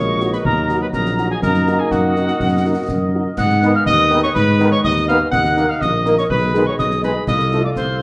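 A military-style march for wind band in Eb minor, this stern, resolute excerpt moves at 123 BPM in a straight 2/4 and is cut from a longer piece. A mellow, distant solo cornet carries the melody, shadowed by a second line from a mellow woodwind section with light vibrato and a pure, crisp-attacked piccolo singing with vibrato an octave higher. Underneath, a smooth-topped trombone section holds sustained chords in the background while a dark French horn section adds accompaniment from 0.2 seconds, and a punchy, dark tuba sits up front on the bass. Concert snare drum, concert bass drum and clash cymbals with a shadowy cymbal colour keep the march going from a small-room acoustic. The harmony moves from Ebm through Abm and a bare Eb5 before landing on F7/C near the close, and the band sits in a large studio reverb that gives the upper winds and horns a roomy, classical sheen.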